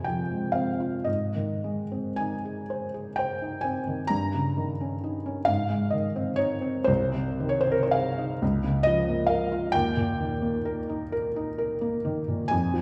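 A felt-muted upright piano carries this tender, dreamy romantic nocturne alone, its mellow, intimate tone marked by audible action noise and a short sustain as it ranges from C2 to Bb5. The rubato pulse moves in a slow 12/8 at 34-46 BPM in dotted quarters, drifting from F minor through Ab, Eb7/G and Bbm/Db before settling on Eb. The piano sits up front within a wet recital-hall reverb that places the listener further back in the room, and this 12.8-second passage is cut from a longer piece.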